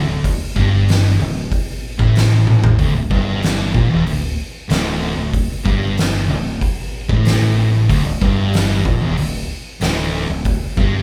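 Stoner and doom metal at 94 BPM in a straight 4/4, this ominous, hypnotic fragment of a longer piece sits on a D5 power chord, tuned to A4 = 438 Hz. Two thick fuzz guitars play the riff in a low register from D2 to Bb2 throughout its 11 seconds, their picked tone dark and distorted and set back in the mix. A fingered electric bass plays an octave lower, running from D1 to Bb1, with a bright, growly overdriven edge that also stays in the background. The oversized, low-tuned acoustic drum kit enters at 0.2 s and sits up front, with a punchy kick, a fat snare, hi-hat and toms, sounding saturated and gritty in a pumping stone room. A short drum fill at 2.5 s breaks up the groove, while light reverb gives the feel of a band playing live together in one space.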